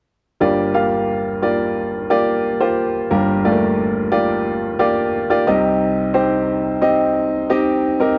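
A straight 4/4 pulse at 89 BPM carries this short pop excerpt in G minor, with a bittersweet, dramatic mood. A brilliant, up-front baby grand piano plays accompaniment from 0.4 to 8.2 seconds, spanning low G1 to F5, moving from Gm7 to Cm at 5.5 seconds. The sound is dry and close, in the manner of a 1970s studio with little reverb.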